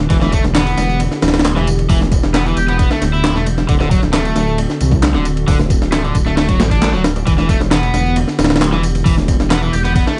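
Energetic, swaggering breakbeat cut from a longer piece, with a gritty, pitched-up sampler drum kit thumping up front over a rumbling detuned saw bass, an overdriven electric guitar riff with delay, a warbling lo-fi pad pumping in the background, electronic tambourine and handclaps, very quiet high-tuned congas, vinyl crackle, and a buzzy metal-muted trumpet that sounds only briefly at 2.6 and 9.7 seconds, each time over Em7 within an Em7–D7–Em7 progression.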